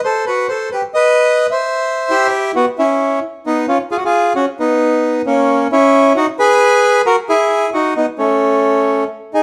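A reedy, dark and smooth bandoneon plays alone and up front through this short tense, passionate tango excerpt in 4/4 at a rubato 133 BPM, its harmony moving from B7 and E minor through C#7 and A#dim to Badd9 in a large studio's moderate reverb, captured live in one room.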